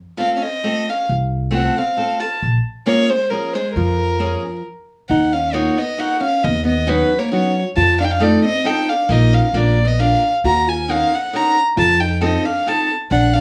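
A small room's light reverb surrounds this nostalgic, bittersweet musette waltz fragment in 3/4, led by an intimate, up-front single violin played sul tasto with an airy bow, soft attack and light vibrato on a dark, smooth melody. A clean hollow-body electric jazz guitar picks a shadowy second line, while a warm steel-string acoustic guitar, picked up front, supplies the accompaniment until 12.9 seconds. A woody, thumpy pizzicato upright bass enters at 1.1 seconds, and the whole ensemble briefly stops from 4.6 to 5.1 seconds before the music moves into its second section.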